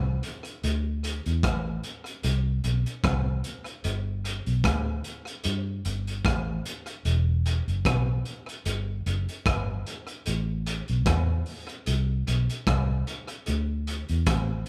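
This lovers rock reggae excerpt moves at an unhurried 75 BPM in 4/4, with a gentle 55% swing on the sixteenths giving the groove a loose, lilting sway. The mood is bittersweet and full of longing, carried entirely by bass and drums playing together in one room under light reverb. A vintage muted electric bass, played with the fingers, opens at 0.0 seconds and sits up front, its tone round, dark and foam-muted as it moves between E1 and G2. The drum kit joins at 0.2 seconds with hi-hat, a tight kick and rim clicks, sounding gritty and saturated with a rolled-off top and a touch of tape echo. Both parts run to the end of this short fragment cut from a longer piece, making for an intimate, low-lit sound.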